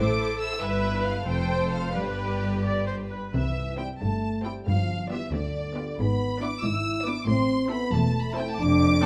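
Graceful and spirited, this brief passage from a quick classical-period movement for symphony orchestra moves in 6/8 at 86-95 BPM in dotted quarters, with a rubato feel in C major. The strings play throughout: a rich, focused violin section carries the melody from a slightly distant vantage, while a second violin section with chamber intimacy supplies an inner line beneath it. Violas fill out the accompaniment with a smooth, lush, even tone, the cellos add an expressive bass colored by vibrato and portamento, and the double basses anchor the bottom with a warm, focused sound. At 3.3 seconds the harmony shifts from a minor-tinged opening to a brighter C major passage, and timpani with medium mallets on calf heads sound in the background until 5.3 seconds. Just after, at 3.4 seconds, a dark French horn section enters with sustained chords that continue to the end. The close, detailed microphones capture the ensemble within a moderate recital hall reverb.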